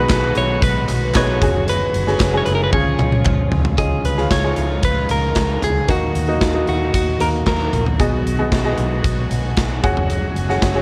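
Heard through worn, warbling cassette tape with light reverb and small-room ambience, this anthemic piano-driven pop excerpt sets a clear, woody, slightly detuned upright piano against a huge arena drum kit with a punchy kick, a dark, round, foam-muted electric bass and a soft, floating string section in the background, while a clean, compressed, direct-recorded electric guitar with phaser carries the melody until 7.8 seconds, very quiet hollow group handclaps sit close and dry until 3.4 seconds, and a drum fill leads into the next section at 3.8 seconds.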